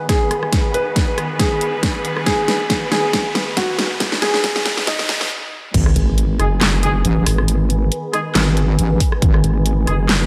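This heavy wobble dubstep excerpt rides a half-time 4/4 groove with a light swing on the sixteenths, its mood aggressive and chaotic. It opens as a build-up: a bright, bowed studio string section holds sustained vibrato chords under sidechain pumping and a sweeping low-pass filter, while a smooth, vintage grand piano with short sustain carries the melody through tape echo and a background riser climbs. Punchy layered electronic kicks and an up-front dubstep kit with a huge snare, crash, handclaps, hi-hat and rim click drive a drum fill, then the groove stops briefly before the drop at 5.7 seconds, where an impact and sub drop hit. Two up-front wobble basses take over, one heavy and square-edged, the other nasal and dark with a formant vowel sweep, both thickened by chorus and overdrive. Mellow brass stabs with tape echo enter during the drop, and the whole mix is soaked in a dreamy plate reverb.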